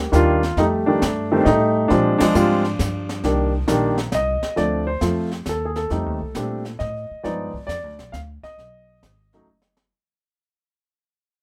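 A grand piano and a pizzicato upright bass open this relaxed, playful jazz piano trio excerpt together, with a brushed drum kit joining almost at once, swinging in 3/4 at 135 BPM. The piano carries the melody up front with a polished, present tone and short sustain, moving through chords such as a rootless Cm7, F13, Bb13 and G7b13. The steel-strung bass sits beneath it, sounding woody and thumpy. The brushes bring dark cymbals, a high-tuned snare and a boomy kick from a studio room, all set in light reverb. The band hits an accent at 2.1 seconds, and the music begins fading out at 4.6 seconds before a short drum fill at 9.5 seconds.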